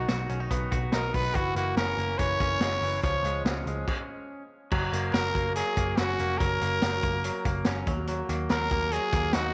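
Bright and nostalgic, this brief cut from a longer piece of jangly indie pop in F# major moves at 143 BPM in a straight 4/4, with a growling, raspy trumpet carrying the melody up front over twangy, compressed clean electric guitar arpeggios washed in spring reverb and tape echo, a round, foam-muted vintage bass, and a punchy vintage drum kit with dark cymbals, all set in a moderate echo-chamber reverb until a stop from 3.9 to 4.7 seconds opens a new section that moves from F# to D#m.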